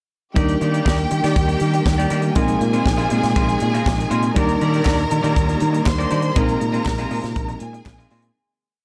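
A polished, lightly reverberant studio sound frames this joyful, celebratory disco piece in Eb major at 120 BPM, where a tight, up-front funk kit drives a four-on-the-floor beat with sixteenth-note hats, a round, punchy fingered bass plays octave lines, a twangy, slightly broken-up guitar with spring reverb chops out sixteenth notes, a worn, slightly out-of-tune tine electric piano holds background chords, a bowed string section with slapback echo plays long high lines over a second string section's sustained pad, and very quiet hollow handclaps join on the backbeat from 4.9 s as the piece fades out from 6.4 s over alternating Ebmaj7 and Bb9sus4 chords.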